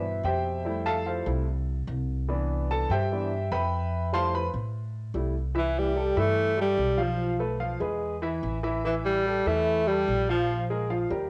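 A breathy alto saxophone takes the melody at 5.6 seconds, playing a jazz-style solo with vibrato, subtone and a soft attack, and it sits up front until 10.7 seconds. This sunny, danceable Afro-Cuban jazz clip, cut from a longer piece, opens with an upright piano carrying the first half, its smooth, vintage tone given long sustain and a cassette-tape colour. An acoustic upright bass runs throughout in pizzicato, its steel strings giving a woody, up-front low end beneath the keys. The harmony moves between Cmaj7 and Fmaj7 early on, then shifts through C6, Fmaj7#11/B, E, A5 and Bb5 once the horn arrives. A moderate spring reverb and a studio room lend the home cassette recording a gentle glow.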